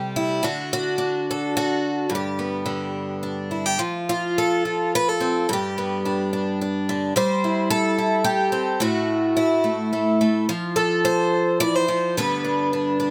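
Close, detailed miking and light reverb frame this short, pastoral folk passage for a lone picked twelve-string acoustic guitar, its bright, shimmering, octave-doubled fresh strings sitting up front from G2 to D5 as it moves gently in a rubato 3/4 around 108 BPM, tuned to A4 = 436 Hz, shifting into a new section at 3.8 seconds and wandering through G, F and C/G chords with open unharmonized moments between.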